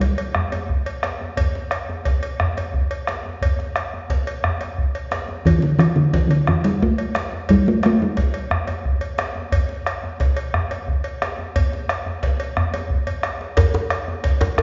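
Earthy and powerful, this excerpt from a longer West African traditional piece moves at 118 BPM in a straight 12/8. A deep, dark bombo sits up front alongside a metallic cowbell, close and dry, and a djembe played with soft hands, all three running from the start to the end at 14.6 seconds. The resonant talking drum carries the melody between D3 and A3, sounding briefly at the opening and returning from 5.5 to 9.0 seconds. A drum fill at 13.1 seconds leads into a new section where a second djembe, tight and cracking, enters at 13.6 seconds. The ensemble is placed in a reverberant recital hall, which lends the recording a roomy, dulled top end.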